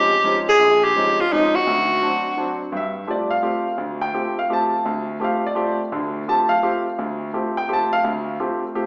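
Swung in a lilting triple meter, this intense, searching jazz fragment opens with a breathy, whispered tenor saxophone melody, intimate and up front with vibrato and scooped notes, that stops at 2.6 seconds while a vintage-toned concert grand piano with deep bass carries the accompaniment through to 8.9 seconds, washed in recital-hall reverb with a small-speaker sound.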